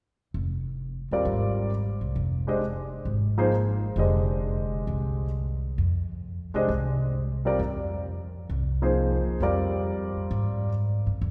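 A swung 4/4 pulse carries this searching, cool jazz fragment from a longer piece, where a woody, thumpy pizzicato upright bass sits up front from 0.3 s and an intimate concert grand piano with audible action noise and deep low end joins at 1.1 s to accompany over an Fm69 chord, all bathed in the long, wet reverb of a church or concert hall.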